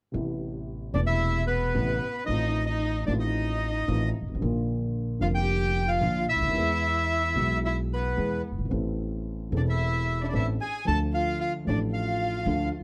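Dark, mellow concert grand piano and pizzicato upright bass open this passionate, melancholic tango at 0.1 seconds, the piano's deep bass and short sustain sitting up front while the woody, steel-strung bass holds the low end. At 0.9 seconds the reedy bandoneon takes the melody in a higher register, its boxy small-room character placed close to the listener, joined by a single bowed violin carrying a softer second line beneath it. The violin sounds expressive and close, with a soft attack, vibrato and portamento. Set in A harmonic minor at 112 BPM in 4/4 with a rubato feel, the harmony moves through Amadd9, F7/A, Bb and E before returning to Amadd9 and settling on Dm. Light reverb and a dark, warm production carry this fragment of a longer piece through to its close at 12.8 seconds.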